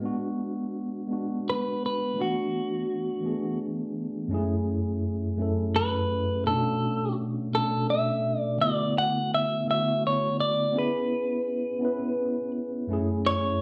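A wet, large studio reverb surrounds this sultry, yearning slow R&B passage in 6/8, cut from a longer piece, with the band playing live together in one room. A mellow tine electric piano sits up front, carrying the chords from G#m7b5 and E9sus4 into a second part built on F#m9, Bm7, D69 and C#m7. A clean, fingered and compressed electric guitar enters at 1.5 seconds to carry the melody.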